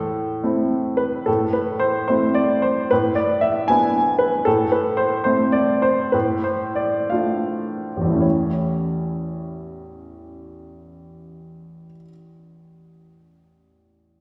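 In a rubato 6/8, this brooding, stormy romantic character piece for solo piano unfolds as an excerpt cut from a longer work, its pace slowing between 3.7 and 8.2 seconds before a new passage begins at 8.2 seconds. The baby grand sounds clear and natural, with a short sustain and an up-front presence, ranging from deep bass notes to the upper middle register. A wet scoring-stage reverb places the listener further back in the room, wrapping the piano in a spacious tail.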